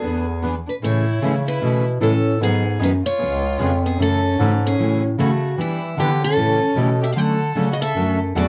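A roomy, vibrato-laden bass clarinet sits up front carrying the bass line in this swinging, playful jazz manouche excerpt, while a bright, boxy parlour guitar picks the melody, a bowed violin adds an expressive second line with vibrato and portamento, and a fresh-stringed dreadnought guitar comps through changes such as Amaj7, C#7 and Dmaj7, joined by a softer swing-style guitar in the background, all within a dark, warm small-room sound.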